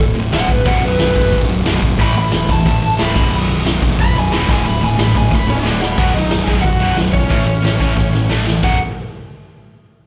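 Punk rock at 181 BPM, upbeat and rebellious, cut from a longer piece, where a lo-fi lead guitar through a small cranked amp solos with slapback echo over a bright, double-tracked distorted riff guitar, a compressed fuzz guitar that drops out at 5.8 s, an overdriven fuzz picked bass, and an up-front raw garage drum kit with a punchy kick, medium-tuned snare, hi-hat and crash whose fills at 5.3 s and 8.0 s mark the turns between chords on D, B and A, all heard as a live gig through the venue's PA with club reverb.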